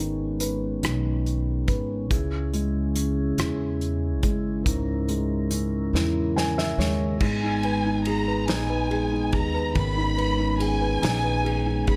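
A dark, felt-muted upright piano with audible action noise accompanies this melancholic, dramatic six-eight pop ballad in G# minor at 47 BPM, shifting between G#m and C#m alongside a flute-like tonewheel organ turning through a slow rotary speaker, a woody, thumpy pizzicato upright bass, and a punchy acoustic drum kit played with bundle sticks, before a piano and drum fill at 5.9 seconds ushers in a lush, bowed violin section with vibrato and a soft attack at 7.2 seconds, all in a small, lightly reverberant room.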